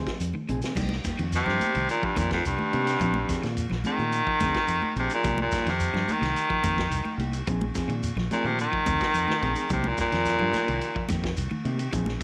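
A small, lightly reverberant room frames this driving, funky afrobeat excerpt in C minor at 108 BPM, where a raspy, gritty baritone saxophone sits up front with a forceful, vibrato-laced solo from 1.4 seconds over a Bb9sus4 to Cm7 vamp, backed by a round, dark fingered electric bass, a vintage drum kit with punchy kick and dark cymbals, grainy shekere, bright high-tuned congas, a slightly broken-up electric guitar playing arpeggios through tape echo, and a mellow, clean electric guitar adding stabs.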